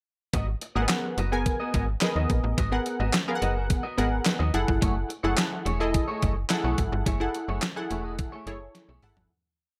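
Early-eighties boogie funk at 107 BPM in G# phrygian, this short, complete piece has a slick, late-night mood, moving from G#m9 to F#m9 at 4.5 seconds over a single verse. A crisp 8-bit digital drum machine sits up front with a thumpy kick and a medium-tuned snare layered with handclaps, plus hi-hat and toms, its sampler-style sound tape-warm and re-recorded in a large room for a mid-tempo boogie beat. A slap-like FM bass with a snappy, metallic attack plays a fat, syncopated line with chromatic approach notes. From 0.8 seconds a funky polysynth built from detuned sawtooth, pulse and triangle waves adds punchy, wave-folded chord stabs in drop2 voicings with grace notes, colored by chorus. Sitting lower in the mix, a clean, twangy electric guitar with a scooped, compressed tone picks choppy sixteenth-note riffs through analog chorus. Light digital reverb frames the groove as it fades out from 7.1 seconds, with a drum fill closing the last moments.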